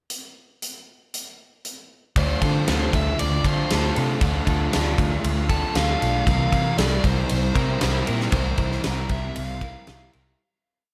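A biting, overdriven lead guitar carries short motif-based call phrases through a digital delay, sitting above a brooding, melancholic shoegaze and dream pop rock piece in D minor at 117 BPM. A huge arena drum kit, with a fat snare and punchy kick in a big natural room, plays the pickup bar alone before the double-tracked overdriven semi-hollow guitar, the vintage foam-muted bass and the lead enter at 2.2 seconds. The hollow-body guitar strums Dm7 and C7sus4 chords with whammy-bar dips and subtle chorus, while the dark, round bass drives in eighth notes under light room reverb until the fade-out from 8.3 seconds.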